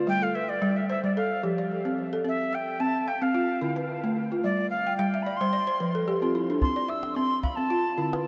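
West African traditional string and xylophone music at 110 BPM in C major with a lightly swung, hypnotic feel, where a woody balafon struck with soft rubber mallets spins arpeggios and a fill at 4.8 seconds beneath an airy jazz flute solo full of vibrato and breathy chiff, both touched with tape echo, while a deep, close calabash joins at 6.6 seconds over a circling G, F, C, D minor progression, all bathed in a huge, dreamy reverb in this short cut from a longer piece.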